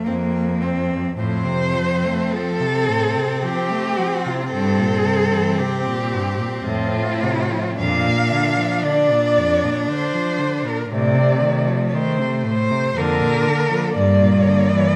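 Classical music for a cello ensemble, yearning and solemn, unfolds in a slow, rubato 3/4 at 49-61 BPM in F major, cut from a longer piece. A warm, expressive solo cello sings the melody in the upper register with vibrato and portamento, over a focused, close accompanying cello, a smooth, even second line and a rich bowed bass. The harmony moves from F through C7/G and Bb/F toward Em7b5/G at 14.0 seconds, all set in a moderate recital hall reverb.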